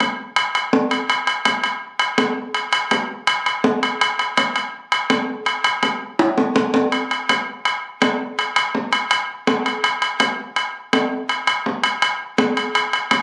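Danceable and warm, this short latin cut moves at a brisk 165 BPM in a straight 4/4 feel. Timbales carry the whole 13.2 seconds alone, their metal shells ringing with an acoustic, vintage character that sits up front in the mix, though the tone is band-limited. The opening section runs until 6.9 seconds, when a drum fill beginning at 6.2 seconds carries the groove into a second section that continues to the end. The sound suggests a phone capturing the timbales in the room, with a club-like ambience and a moderate reverb giving the sense of a large room around the drums. As a fragment lifted from a longer piece, it feels like a snapshot of a dance-ready groove.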